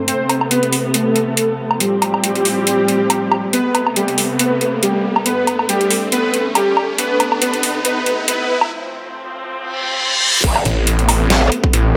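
A wobbling growl bass slams in at 10.4 seconds, joined by a snarling, detuned saw bass at 10.7, in this chaotic, menacing heavy wobble dubstep excerpt at 139 BPM in A minor, where a smooth, full-bodied supersaw melody with low-pass filter and digital delay, veiled con sordino strings pumping under sidechain, a riser and reverse cymbal, and an overdriven kit with deep snare, metallic hats and woodblock build toward a drop that adds a punchy electronic kick.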